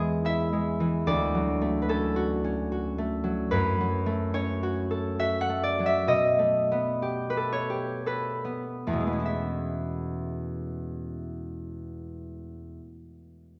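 A bright, ringing concert harp plays alone and up front in this serene, dreamy classical excerpt, its fingerpicked chords moving through Emaj7, Dmaj7, F#m7 and Baug7 in a rubato 3/4 that slows from 2.3 to 9.3 seconds before a new section settles on E6, all heard from further back in a wet recital hall.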